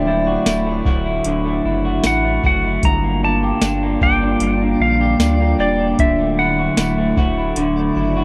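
A soft vintage rhythm box with a deep kick, tonal snare, metallic hats and tambourine sets a straight 76 BPM pulse in 4/4 under this ethereal, melancholic dream pop excerpt in G dorian, where a twangy clean lap steel sings the slide melody through dub echo, a slightly broken-up electric guitar through a small old amp picks arpeggios up front, a warbling tape-like pad holds dark chorused chords, a thick saturated sub bass anchors the low end, and a very quiet twinkling granular texture enters at 4.3 s, all set in a moderate spring reverb across an echo-heavy mix moving from Dadd9 to Gm7 and back.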